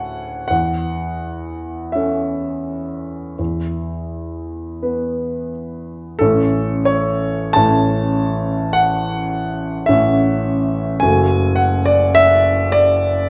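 Tender and dreamy, this brief cut from a longer romantic nocturne unfolds for solo piano in A major, drifting in a slow, rubato 4/4 between 41 and 54 BPM. A grand piano with a warm, polished, present tone carries the whole passage, sitting up front with long sustain and ranging from F#1 up to A5. The harmony opens on an A chord over E at 0.5 seconds, reaches an E5 at 3.4 seconds, then settles onto A when a new section begins at 6.2 seconds before turning to F# minor near the close. A wet recital hall reverb surrounds the instrument, while the recording carries the worn character of old cassette tape, its warbly pitch drift lending the music a hazy, faded quality.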